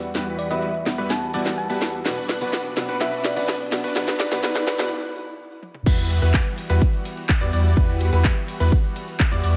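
This excerpt of euphoric, emotional festival progressive house at 126 BPM in E minor opens on a build-up, with a lush, warbling unison pad, a bright grand piano arpeggio and a huge detuned supersaw riff under a filter sweep, all set in a moderate concert hall reverb. A woody, boxy picked acoustic archtop guitar with old strings adds accompaniment through sampler grit, pumping and delay. A round, tine-like synth pluck carries a gentle melody with chorus and delay from 0.4 seconds until 4.3 seconds, while a very quiet riser sits beneath and the house kit's cracking snare, crisp hats, claps, tambourine, toms and cymbals roll through a drum fill. The harmony moves from Emadd9 to Bm before a brief break at 4.9 seconds, where the guitar and riser stop. At 5.9 seconds the drop lands on Emadd9 with a punchy, up-front electronic kick and a deep, thick saturated sub bass on E2, while the pumping pad, piano and supersaw carry on.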